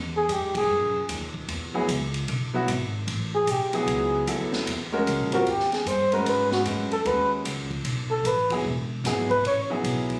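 Small-group swing and bop jazz at 151 BPM in E major, swinging and warm, in which a breathy, mellow flugelhorn with light vibrato carries the close, up-front melody over woody pizzicato upright bass and an airy, polished big-band drum kit with a high-tuned snare and punchy kick, while a clear baby grand piano with audible action noise and long sustain joins the accompaniment at 1.7 s, following a band accent at 0.5 s, the whole heard through a phone recording in a club room with moderate reverb, cut from a longer piece.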